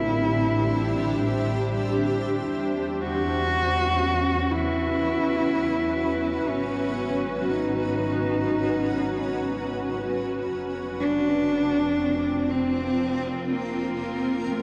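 Steeped in huge reverb with an 8.8-second tail and a dark production, this serene, melancholic ambient passage in free time sets an intimate, sul tasto cello melody with diffuse delay over a cloudy, evolving granular pad that holds chords moving from Am7 through E5 and G#7sus4 to F5, while a woody, bowed double bass section lies low beneath and fades out across the full 14.6 seconds.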